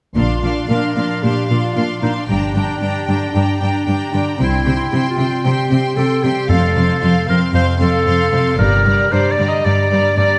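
A bright, up-front solo clarinet carries a second line through this adventurous, heroic cinematic excerpt in Bb major at 114 BPM, alongside a smooth, vibrato-rich violin section holding the high melody and a focused, close second violin section. Clear violas, a ringing fingerpicked concert harp playing arpeggios, and lush bowed cellos and double basses fill out the orchestra over chords moving from Bbadd9 through Gm, C5 and F, with the double basses stopping at 8.8 seconds. Very quiet timpani struck with medium mallets mark 0.2 and 6.5 seconds, all set in a moderate scoring-stage reverb.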